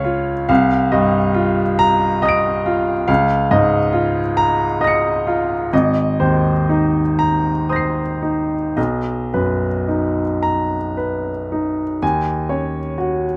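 Set in 6/8 with free, elastic rubato, this short cut from a longer piece is impressionist classical music for solo baby grand piano, and its mood is mysterious and wistful. The piano sits up front with a clear, intimate tone and a long, natural sustain, and the soft clicks and thuds of its action are audible beneath the notes. Its range stretches from the deep bass up to the high treble as the harmony drifts through Cm11, Db69, Abadd9 and Bmaj7. At 12.0 seconds the music turns toward a new section on Ebm7 before the cut ends at 13.4 seconds. Close, detailed microphones and a nearly dry room keep every nuance of the instrument in sharp focus.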